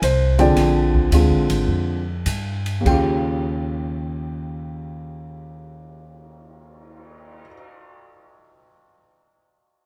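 Swung eighth notes in 4/4 ease back as the trio slows through the first 2.9 seconds of this playful, relaxed jazz piano trio fragment, cut from a longer piece, before settling on an Eb9 chord. An intimate grand piano carries the melody up front, its short sustain and audible action noise close at hand, beside a woody pizzicato upright bass with steel strings. The acoustic drum kit sits lower in the mix in the studio room, adding dark ride and crash cymbals, a cymbal swell, hi-hat, a high-tuned snare and a boomy kick, while the trio plays live together under light reverb.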